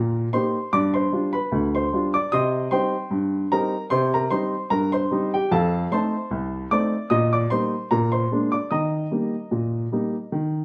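A solo upright piano opens this jaunty, cheerful ragtime passage in E-flat major, its woody, polished tone spanning from C2 up to E-flat 6. The tempo is an easy 75 BPM in 2/4, with a light swing on the sixteenth notes that gives the tune a playful lilt. The harmony moves from E-flat through G7 and C minor to F7, then settles through E-flat over B-flat and B-flat 7 before landing back on E-flat at 8.7 seconds. Each note has a short sustain, and the instrument sounds present, yet the recording places the listener further back in the room, with a wet studio reverb around it. The piano is tuned slightly low, to A4 = 439 Hz, and lossy compression artefacts colour the sound. The piece runs from 0.0 to 10.6 seconds as a cut from a longer work.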